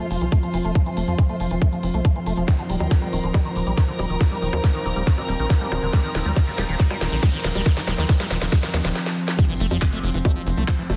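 A dense, heavily limited modern mix with light reverb carries this psychedelic trance excerpt at 139 BPM, with an alien, psychedelic mood as a ring-modulated sawtooth drone and a squelchy, resonant acid bass with tape echo both pump under sidechain while filter sweeps move through the build-up. Beneath them a punchy sequencer bass drives the low end, an up-front electronic kick enters at 0.3 seconds, and a garage kit of cracking snare, crisp hats, bongos, handclaps and crash, re-recorded in a large room, adds fills before a short break. A dark, bowed chamber string section with vibrato drops out at 9.0 seconds, and a very quiet riser leads into the drop and impact at 9.4 seconds.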